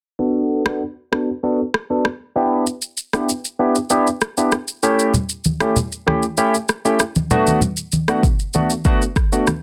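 A straight 4/4 afrobeats groove at 97 BPM rolls forward from 0.7 seconds on an electronic, produced afro-pop drum kit, with a deep kick, rim click and shaker sitting up front and soft clipping on the snare. Above it, a barky tine electric piano plays the accompaniment from 0.2 seconds, its bright, clean, direct tone coloured by a lush chorus and a low-pass filter that sweeps across the whole passage. The keys move through D6, G6, A7 and Bm7 in D major, tuned to A4 = 444 Hz, giving the cut a romantic, sunny mood. Congas enter at 5.1 seconds, low-tuned and acoustic with a thin skin and soft hands, set up front in a small room. Light reverb surrounds a dense, heavily limited modern master in this short section taken from a longer piece.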